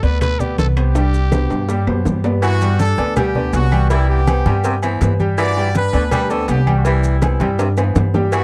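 This excerpt of sunny, danceable salsa in G major moves at 163 BPM in a straight 4/4, opening with a growling trumpet whose gritty, vibrato-laden solo line rides a tape echo for the first 2.0 seconds. Beneath it, a bright baby grand piano with a worn, intimate tone, audible action noise and short sustain provides the accompaniment. A thumpy pizzicato upright bass with steel strings sits up front in a low register. In the background, thin-skinned congas, grainy maracas, and ringing, saturated timbales and agogo bells play from the start, joined at 0.2 seconds by tight, high-tuned bongos with cowbell and woody claves, with a drum fill leading into the next section. At 2.4 seconds a brilliant, punchy horn section takes over the melody over Gmaj7 and Cmaj7 chords, while a raspy baritone saxophone adds a second line that sounds distant and roomy, before another fill closes the passage. The recording is dry and close, in a 1970s studio style.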